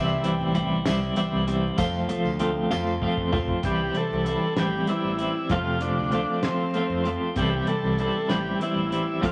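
In a straight 6/8, this hazy, kaleidoscopic psychedelic rock excerpt opens with a brief, mellow chorused organ-string chord over a bright, twangy twelve-string guitar riff with tremolo, round fuzz bass, a dark, thuddy cloth-damped drum kit, a faint jingly tambourine and an ominous rumbling drone, before a drum fill leads to a buzzy, overdriven combo organ melody entering up front at 3.6 seconds, the whole set in a large studio reverb with vinyl crackle.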